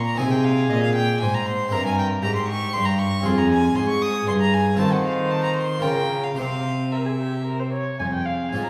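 In a rubato 3/4 at roughly 110-120 BPM, this brief excerpt from a baroque-style sonata movement with continuo unfolds in F minor, tuned to A4 = 439 Hz, with an introspective, grave mood. A single violin carries the melody between Ab4 and Eb6 in a rich, close gut-string tone, while a second violin sets a dark, nasal, more distant second line beneath it. The cello sits up front on the bass, its reedy period-style sound touched by light vibrato, and the harpsichord, in the background, supplies a brilliant, plucked Italian-style accompaniment from three sets of strings. All four parts play throughout the 8.7 seconds, moving through a harmony that passes from Ab through C7/G, Fm and F7/Eb to Bbm/Db and C before settling on Fm at 8.0 seconds. A recital hall's reverb of about 1.5 seconds places the listener further back in the room.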